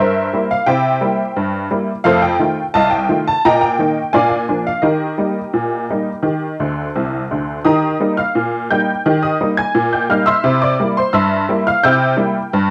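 A detuned, jangly honky-tonk upright piano plays alone from the first moment, sitting up front in a jaunty, playful ragtime piece in Eb major. The tempo is 86 BPM in a straight 2/4, and the harmony moves from C7 through F7 and Bb7 before settling on Eb. The piano's bright, vintage tone carries the color of cassette tape, fitting the feel of a home recording. At 6.6 s a short piano fill leads into a repeat of the opening section at 7.7 s, where the C7 chord returns near the close. A moderate studio reverb adds a touch of space to this brief piece of a longer performance, which ends at 12.7 s.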